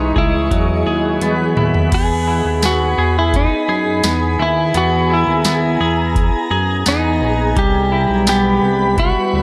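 Dream pop at 85 BPM in E lydian, blissful and dreamy, this short excerpt pairs a bright, twangy clean electric guitar melody through digital delay with a second, darker clean guitar picking arpeggios under subtle chorus and delay. A shimmering, ethereal pad holds sustained chords with an octave-up sheen, while a fat, saturated analog bass sits up front and a booming analog drum machine with deep kick, crisp snare and metallic hats enters at 0.2 seconds, playing a fill from 1.2 to 1.9 seconds. The harmony moves from C#madd9 through Eadd9 and E to Cmaj7 at 7.6 seconds, all within a dark, warm production with light reverb and digital ambience.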